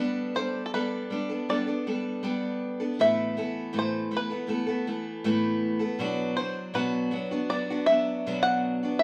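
Captured live in one room with a moderate large-studio reverb, this melancholic, intimate acoustic folk excerpt moves at a straight 80 BPM in 4/4 through Gadd9, Asus2 and Bm. A picked steel-string acoustic guitar carries the accompaniment from the start, up front and warm with audible finger squeak and an auditorium-like body. At 0.4 seconds a bluegrass banjo enters with the melody, played with fingerpicks and sounding twangy and percussive close to the listener.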